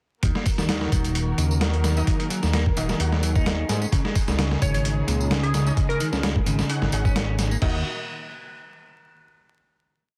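Breakbeat at 130 BPM in Eb minor with a funky, gritty swing, built on a thumpy, overdriven looped break with edits and a machine tambourine layer, under a fat, detuned sawtooth bass line that skips up front, a twangy clean guitar riff and veiled muted strings in the background, sparse punchy orchestra-hit stabs from 2.0 s, and a glassy wavetable pluck playing short answering phrases between 4.6 and 6.2 s, all over vinyl crackle before a final Ebm chord at 7.6 s.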